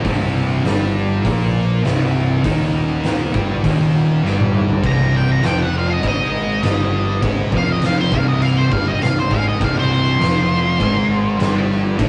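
An up-front octave-fuzz lead guitar, dark and wah-soaked, takes a solo from 4.9 seconds over a heavy, hypnotic stoner and doom metal riff in C minor at 100 BPM, built from two thick fuzz guitars and a bright, double-tracked high-gain guitar in the background, an overdriven fuzz bass, and an oversized low-tuned drum kit with a fat snare and punchy kick that plays a fill just before the solo, all captured in a rough rehearsal-room recording with a rolled-off top, cut from a longer piece.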